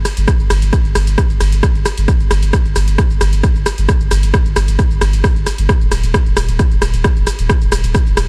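A dark, dry production frames this short cut from a longer piece of driving peak-time techno, locked at 133 BPM in a straight 4/4 with a hypnotic, intense pull. A saturated sub bass opens at 0.0 seconds, deep and thick with a triangle-like body, fast attack and sustained tone, sitting low between Eb1 and G1 while overdrive, sidechain pumping and a low-pass filter shape its weight. The techno drum kit arrives at 0.1 seconds, layering hi-hat, ride cymbal, rim click and shaker, its hats carrying a tape-softened glow from being re-recorded in a small room. A heavy electronic kick enters at 0.3 seconds and stands as the loudest part, layered and produced with the same small-room, tape-treated character. Held to one continuous section, the track stays fixed on its relentless groove, letting the pumping low end and the warm percussion drive it forward.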